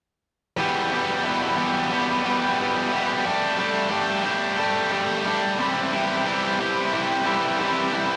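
A tight, distorted electric guitar carries this brooding, driving rock excerpt alone, picked with a bright, biting edge and double-tracked so it sits thick and up front. It plays from 0.6 to 8.2 seconds at a steady 90 BPM in a straight 4/4, ranging from E2 up to G4 in E minor, with tuning set to A4 = 441 Hz. The harmony moves from Em to Gsus2 at 3.3 seconds and on to C, and a slapback echo colours the guitar. The sound is a rough rehearsal-room recording with tube saturation and a dulled top end, set in a short, wet booth ambience. Cut from a longer piece, it offers a single brief section of raw, moody guitar.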